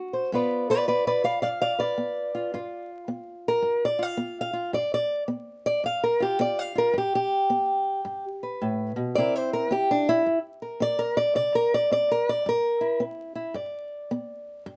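Acoustic country blues with a soulful, laid-back mood, moving at 109 BPM in 4/4 with a swung eighth-note feel in G mixolydian. A single fingerpicked, ladder-braced acoustic guitar carries the whole piece, sitting up front with a dark, woody, boxy tone and the sound of old strings. It spans from low G2 up to F5, playing solo from the start through to 14.8 seconds. The harmony rests on G7 before shifting to C7 at 9.1 seconds and settling back on G at 13.6 seconds. Light reverb and a layer of vinyl crackle give this short passage, cut from a longer performance, an aged, intimate character.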